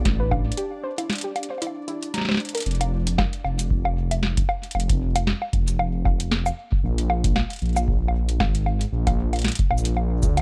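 Melancholic, glitchy IDM at 115 BPM with a light 16th-note swing, this dry, gritty excerpt opens with a warbly, dusty pluck arpeggiating over Bm7 and C7 beside a resonant, bubbling stepped-filter texture, both gone by 2.7 seconds, leaving the dark, detuned, rumbling saw bass, a deep electronic kick and a booming analog drum machine of tonal snare, metallic hats, bongos and shaker to carry on to the end, after a drum fill at 2.4 seconds and a move to Bb7(no3) at 6.8 seconds.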